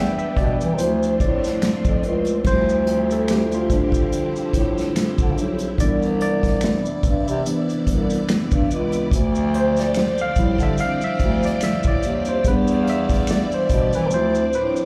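Heard as a live club gig through the venue's PA, this soulful, smooth neo-soul R&B excerpt centres on a mellow, slightly out-of-tune tine electric piano with slapback echo soloing throughout, over a swirling, bright string machine with ensemble chorus and phaser, a vintage bass clarinet carrying the low end up front, maracas, finger snaps and group handclaps in a small room from 0.2 s, and an acoustic drum kit played with bundle sticks, with dark cymbals and a punchy kick, entering at 0.4 s and rounding off with a drum fill.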